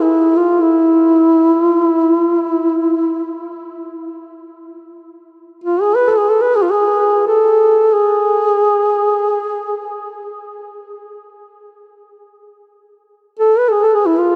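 Steeped in a huge, wet ambient reverb with a 6.5-second tail, this spacious world-music fragment, cut from a longer piece, drifts in free time with a meditative calm. A dark, close-miked duduk plays solo and up front for the full 14.4 seconds, moving between E4 and B4 in a folk style. Its vibrato-laced tone is trailed by a diffuse ambient delay.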